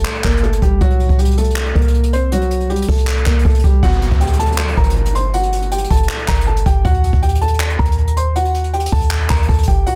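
A dense, heavily limited modern master with a studio-ambience feel carries this menacing, eerie trap cut at 159 BPM in a half-time 4/4, set in G harmonic minor and moving through Gmadd9, C5 and Eb. A dark, boxy grand piano with long sustain plays the melody over a deep, clean, sine-like 808-style bass whose fast-attack notes decay mellowly, while an up-front, airy jazz brush kit recorded in a small room adds handclaps, hi-hat and a boomy kick. At 3.8 seconds a faint electronic downlifter enters as the music moves into a new section and runs until 6.8 seconds, and the clip is cut from a longer piece.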